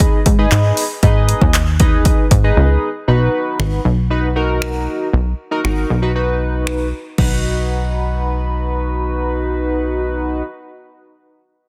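A straight pulse from a punchy, dry analog drum machine drives this summery, euphoric dance-pop cut taken from a longer piece, with a punchy kick, hi-hat, handclaps, finger snaps and a crash cymbal, all roughened by overdrive and sitting up front. Beneath it, a plucky, funky analog bass built from sawtooth and square waves snaps in with a fast attack and decaying filter pluck, pumping through sidechain compression. A glossy, retro polysynth carries the chords in a mellow midrange, blending pulse, sawtooth and triangle waves with a sub octave, pulse-width modulation, a filter sweep and lush chorus, and it breathes with the same sidechain pumping. The clip opens on a drop over G#m, with a brief break near its end before the harmony shifts to B at 3.1 seconds. The drums drop out at 7.3 seconds, leaving bass and synth to carry on until 10.4 seconds, all under light reverb and a dense, heavily limited modern master.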